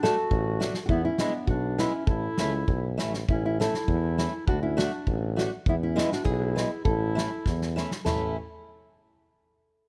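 Festive and bouncy, this brief alpine folk dance-band passage in 2/4 with a rubato feel puts a dark, small-toned fingerpicked nylon-string guitar melody over a classical-style clarinet second line, a boxy, fresh-stringed swing acoustic guitar fingerpicking the accompaniment, a warm, up-front tuba bass entering at 0.3 seconds, and a punchy, natural small-room drum kit that plays a fill from 7.4 to 8.1 seconds, in a dry, close and detailed recording.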